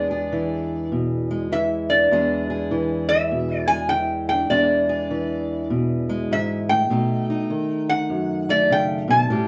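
A swung 4/4 lilt drives this brief fragment of soulful, gritty acoustic country blues, cut from a longer piece, with a metallic, nasal resonator slide guitar carrying the melody up front, played with fingerpicks. Beneath it, a boxy parlour steel-string guitar fingerpicks the accompaniment, finger squeaks audible, holding on E7 before moving to B7 at 6.9 seconds. A small, reverberant room places the duo a little further back, giving the sound a warm intimacy.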